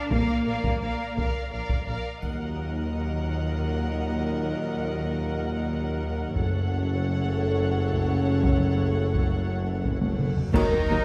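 A 6/8 pulse of hard-stick taiko in a live room drives this heroic, relentless fragment of an epic orchestral film score, where a rich, distant violin section carries the melody over a softer second violin line, lush violas, very quiet cellos, and double basses in the background, with mellow French horns holding chords, bright trombones and a warm tuba joining at 2.2 seconds alongside a burst of triangle, dark clash cymbals and concert bass drum, before a huge reverse cymbal and sub drop at 10.3 seconds lead into a final accented impact where an airy flute section enters, all set in a moderate scoring-stage reverb.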